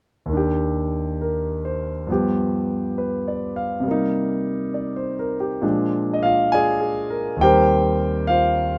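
Sophisticated and warm, this brief cut from a longer solo jazz piece features a concert grand piano playing alone from 0.3 to 8.8 seconds in Eb major at a slow 68 BPM in 4/4 with a swung eighth-note feel, its deep bass and natural, up-front tone spanning Eb2 to Ab5 in light reverb as the harmony moves from Ebmaj7 through G7, Cm7 and Bb7 to Eb6 at 7.4 seconds.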